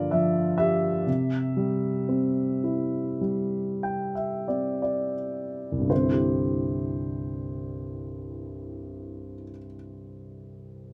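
The rhythm moves in a gentle, rubato 4/4, drifting between 40 and 65 BPM and slowing through the first 5.9 seconds before a new passage begins. This short classical fragment, taken from a longer piece, is a lyrical solo for a dark baby grand piano in C major, with a peaceful, tender mood. The harmony opens on Gm7 and soon settles onto C, while the playing spans from C2 up to G5. A piano fill unfolds from 3.2 seconds, ringing with a long sustain that lets each tone linger. The instrument sits up front with a mellow character, captured by close, detailed microphones in a dry room with little reverb.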